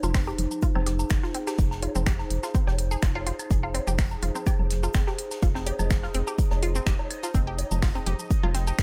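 Minimal techno at 125 BPM in F minor, this sparse, hypnotic fragment of a longer piece rests on a single Fm7 chord with a light swing on the 16ths. A punchy, layered electronic kick sits up front from 0.1 seconds, joined by a rubbery, nasal square bass holding F1 with a hollow, bouncy tone, a moving notch and sidechain pumping. A squelchy, juicy blip pluck plays a riff between C4 and Ab4, its detuned sawtooth carrying ring modulation, a noise layer, phaser and tape echo. Underneath, a dark, warbling tape-like pad with a nostalgic lo-fi character pumps with the kick through chorus and built-in reverb, and at 4.7 seconds a bubbling stepped-filter texture with random filter steps emerges in the background. The rhythm is filled out by a clicky minimal kit of finger snaps, hi-hat and shaker re-recorded in a small room, analog congas, woodblock and bongos re-recorded in a large room, and a distant, airy gated 80s kit of hi-hat, shaker and medium-tuned snare in a bright stone room, high-pass filtered. 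The overall mix is dry, with little reverb.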